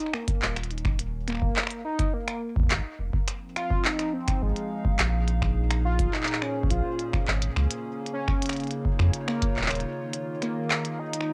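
A velvety, detuned sawtooth synth lead with chorus, analog delay and vibrato carries the melody through this glitchy, intricate IDM excerpt at 105 BPM, set over a deep, round sine sub bass and a tape-warm electronic kick that sit up front. A glitchy kit of finger snaps, handclaps and clicky hi-hats, re-recorded in a small room, adds intricate detail, while a warbling, nostalgic square-wave pad with ring modulation and a slow attack enters at 3.4 seconds to hold chords moving from Fm7 through Bbm7 to Eb9sus4. The kick drops out at 9.5 seconds and the bass at 9.8 seconds for a brief break, and the whole track has the tape character of a home cassette recording in a lightly reverberant room.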